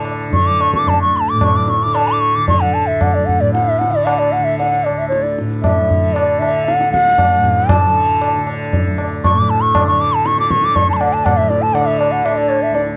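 This dry, close recording has the intimate feel of a 1970s studio, with little reverb around the instruments. It is a short, serene and radiant slice of Hindustani classical music in raga Hamsadhwani on D, tuned to A4 = 439 Hz and cut from a longer performance. A hollow, pure bamboo bansuri sits up front, carrying the melody between C#5 and D6 with vibrato and tongued notes. Beneath it, the tanpura sustains a softly plucked, buzzing and shimmering drone from D2 to D3. The high-tuned tabla rings out from a distance, as if placed in a large room, and enters at 0.1 seconds. In straight 4/4, the tempo gradually speeds up from 111 to 122 BPM over the 13 seconds.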